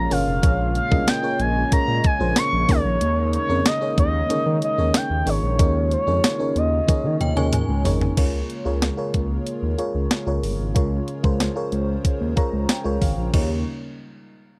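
An up-front expressive synth lead, smooth and mellow with chorus and vibrato, carries the melody for the first 7.5 seconds of this nostalgic, romantic 1980s-style pop excerpt at 93 BPM in 4/4, moving over Bbm7 and Eb7sus4 before the harmony shifts to Db6. Underneath, a lush, dreamy FM electric piano with a soft pad layer plays accompaniment and adds a fill near the end, a dark, shimmering pulse-width pad sustains chords in the background, and a gliding sawtooth bass with portamento and saturation sits up front beside a thumpy, sampler-style digital drum machine that rolls into a fill around 6.9 seconds. A brief inharmonic synth chime rings in at 7.2 seconds through ensemble chorus, phaser and tape echo, all within a dry, close studio sound.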